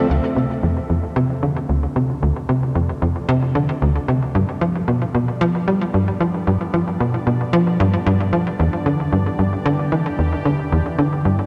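A tight, punchy sequencer bass sits up front, its nasal sawtooth and square-wave tone plucked by a filter with a fast attack and decaying notes, running a driving riff from 0.1 seconds through a lush chorus and delay. This is ambient, sequencer-driven space music at 113 BPM in 4/4 with a straight feel, set in D dorian and carrying a cosmic, mysterious mood. Behind it, a sweeping resonant pad holds sustained chords, its detuned, airy sawtooth layered with noise and shaped by a slow attack, long release, filter swell and chorus, and the analog synth pad fades in from 0.1 seconds. The harmony moves from Dm to Gadd9 at 4.3 seconds and then to Em7. A cathedral reverb with a long tail soaks the dreamy mix, which has a cassette-tape character, and this short passage is cut from a longer piece.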